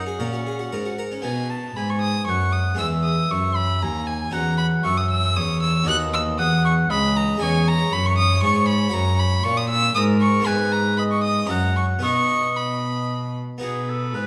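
In a flowing, straight 3/4 at 117 BPM, this serene baroque-style sonata fragment in B major, tuned to A4 = 439 Hz, sets an up-front, gut-strung violin with an airy bow and nasal, reedy edge on the melody. A distant, roomy oboe adds a second line from 0.2 s, while a brilliant, plucked Flemish-style harpsichord with octave strings supplies continuo accompaniment. A dark cello with light vibrato and a smooth top holds the bass, all within the wet reverb of a recital hall, and the passage settles on a B chord at 12.0 s.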